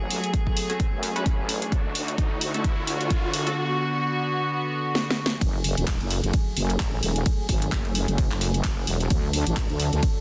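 A heavy, wobbling sawtooth bass with a detuned unison edge and a resonant bite sits up front through this swaggering, bouncy bass house excerpt in F# minor, pumping under the sidechain with a chorus shimmer and a high-pass filter. It moves at 130 BPM in 4/4 with a 57% swing on the sixteenths, over a punchy, tape-warm electronic kick and a layered house kit of cracking snare, handclaps, hi-hat and ride cymbal, both re-recorded in a large room. A bowed string section with a reedy, gut-string tone holds sustained chords, low-pass filtered and pumping under the sidechain, moving between F#madd9 and D. The opening build-up carries a background electronic riser from 0.5 to 3.6 seconds, a very quiet nasal, band-passed chord stab with ring modulation and phaser, and drum fills, before the drop lands at 5.4 seconds. Light digital ambience surrounds a dense, heavily limited modern master.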